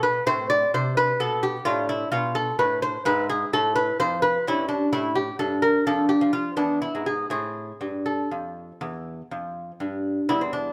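A solo lute carries this brief, introspective baroque-style dance in A minor, its gut strings fingerpicked with a delicate touch and sitting up front in a close, detailed recording. The double courses, some of them octave-doubled, add to its warm tone, and the part ranges from E2 up to D5. Counted in a rubato 12/8 at roughly 79-87 BPM in dotted quarters, the music moves with a solemn, unhurried sway, tuned to A4 = 435 Hz. The harmony opens on Am, passes through Dm13/A, E/G#, A7/G and Dm/F, reaches E at 6.6 seconds, and settles back on Am at 7.3 seconds. Light reverb surrounds the instrument in this short cut from a longer piece, which ends at 10.7 seconds.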